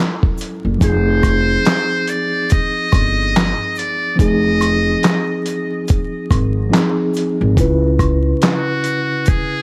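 Vinyl crackle and a faint mains hum sit over a small room ambience in this short, nostalgic cut from a longer lo-fi hip hop piece, moving at 71 BPM in 4/4 with a swung sixteenth-note feel. A mellow tine electric piano opens the passage, its clean tone heard through built-in speakers and softened by a low-pass filter as it carries the chords from Gbm7 through Fm7 to Dbm7. A dusty, sampler-style drum kit enters at 0.2 seconds with a thumpy kick, a medium-tuned snare, hi-hat and handclaps, compressed, overdriven and gritty after being re-recorded in a small room, while an egg shaker and woodblock add quiet texture in the background. An upright bass with gut strings enters at 0.6 seconds, played pizzicato and giving a woody, up-front low end until 8.3 seconds. Over this, a trumpet with a metal mute sings a reflective jazz-style solo from 0.8 seconds, its buzzy, thin tone carrying light vibrato and sounding distant and roomy through a low-pass filter and tape echo.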